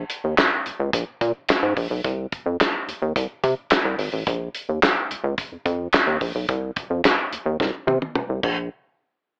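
A rubbery, hollow square-wave bass opens this short funk excerpt at 108 BPM, bouncing through a low register with a nasal filter pluck and resonant sustain, joined almost at once by a soul drum kit with a fat snare, tight kick, dark cymbals, handclaps and toms. The mood is driving and sly over a straight 4/4, with both parts up front, the kit sounding mid-forward in a small room, and the whole mix touched by light reverb and an AM radio coloring. A drum fill from 7.6 seconds carries the clip to its close at 8.7 seconds.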